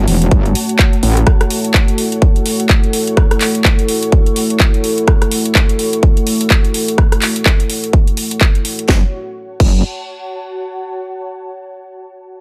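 A metallic, overdriven wobble bass with a saturated FM bite pumps with sidechain compression at the very start and returns at 8.9 seconds in this bouncy, swaggering bass house clip, set in F# minor at 126 BPM with a swung sixteenth feel. Underneath, a dark, detuned analog pad holds sustained chords with a ring-modulated, sub-octave depth, while a mellow, ethereal pad floats higher with ensemble chorus and its own reverb, both breathing with sidechain pumping. A punchy, up-front electronic kick and a house kit of cracking snare, metallic hats, handclaps, rim clicks and crash drive the groove in a dry, loud mix until 9.7 seconds.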